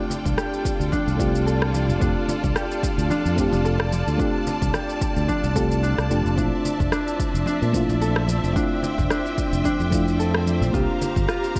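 Growly and bright, the fingered electric bass sits up front, entering at 0.3 seconds and anchoring this sunny, smooth sunset chillout groove at 110 BPM in 4/4 with a light sixteenth-note swing in F major. A mellow FM electric piano supplies round, vintage accompaniment with a warbling chorus and tape echo, while a concert harp adds thumb-plucked, ringing arpeggios that carry their own tape echo. Behind them, a clear symphonic string section holds lush, bowed chords with vibrato from a distant vantage. The rhythm bed pairs a punchy, overdriven electronic kick with an overdriven electronic shaker and rim click, plus close, dry congas played with soft hands in the background. The harmony moves from F6/9 to Bbmaj9#11 at 6.4 seconds and reaches C7sus4 at 10.7 seconds, all wrapped in light reverb and digital ambience in this short excerpt from a longer piece.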